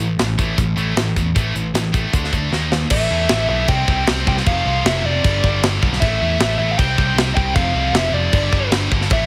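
A menacing, driving hard rock passage in A minor at 155 BPM opens on a bright, scooped, high-gain double-tracked guitar riff over a growly overdriven picked bass and an up-front metal drum kit with a tight kick, hi-hat, snare and crash. After a drum fill at 2.5 seconds, a dark, smooth lead guitar with overdrive and digital delay enters at 2.9 seconds, carrying the melody over a cycling A5, C5, F5 and G5 progression in a small room.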